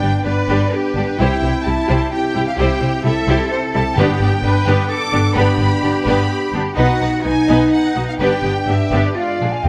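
Soaring violins carry the melody of this triumphant, heroic film-score passage at 128 BPM in 3/4, over a lush bed of rich second violins and focused violas set in the background, intense cellos, and up-front double basses. Mellow French horns hold sustained chords as the harmony moves from G through C and B, while round, very quiet timpani on calf heads sound at 4.0 s. An airy silver flute slips in at 9.2 s on a closing Bb7/Ab chord, all within a concert hall reverb, in this passage cut from a longer piece.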